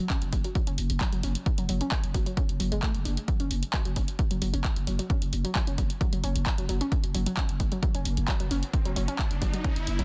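A straight 4/4 pulse at 132 BPM drives this dark, relentless slice of peak-time techno, with an up-front, layered electronic kick joined by an analog drum machine's handclaps and hi-hats, the hats pumping against the sidechain. A growling, buzzy 808-style bass sits on F#1 through overdrive and a low-pass filter, while a warbly, dusty lo-fi pluck riffs between F#3 and D4, colored by chorus, tube saturation, cassette tape grit, ring modulation, filter sweeps and digital delay. The mix is dry, dense and heavily limited, and an electronic riser enters at 8.1 seconds as the cut from a longer track closes at 10.0 seconds.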